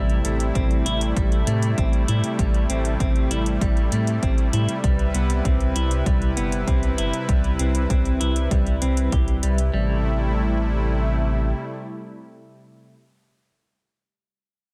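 Synthwave in A minor at 98 BPM, moody and driving, cut from a longer piece: a brassy, detuned sawtooth pad with chorus and sidechain pumping holds sustained chords moving from Am7 to Cmaj7, a clean, twangy electric guitar plays picked arpeggios through a low-pass filter sweep and tape echo until 10.0 seconds, a round, deep analog bass anchors the low end, and a punchy electronic kick with metallic hi-hats drives the beat before the drums drop out by 9.7 seconds, set in light reverb as the bass holds on until 11.5 seconds and the pad carries on to 12.9 seconds.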